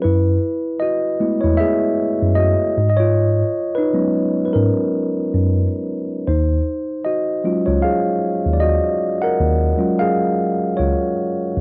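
Dry and close, the recording carries a cassette-tape character, with little reverb around it. This reflective, nostalgic hip hop fragment moves at 77 BPM in 4/4, its sixteenth notes lightly swung. A mellow tine electric piano carries the accompaniment from the start, its clean, up-front chords dulled by a low-pass filter and tape color. Underneath, a second tine electric piano takes the bass role from 0.1 seconds, sitting low, warm and up front as though heard through built-in speakers. The harmony drifts from Gbm11 to Abm11 and then to Ebm11, giving the electric piano's featured passage a hazy, wistful glow in this brief cut from a longer piece.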